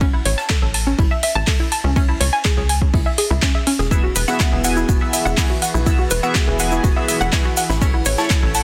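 A punchy, up-front electronic kick drives a straight 4/4 at 123 BPM, joined by house handclaps and metallic hats plus a background jazz brush kit with dark cymbals and a high-tuned snare, while a tight, sawtooth sequencer bass pumps underneath in this uplifting, euphoric progressive house excerpt in E major. A round, up-front analog pluck spins chorused, tape-echoed arpeggios over a progression of A, C#m, Eadd9 and back to A. At 3.9 seconds a glossy, retro chorused polysynth adds phased stabs alongside a grainy cabasa, and at 5.1 seconds a shimmering, ethereal pad drifts in behind, all within a dense, heavily limited modern master with light small-room ambience.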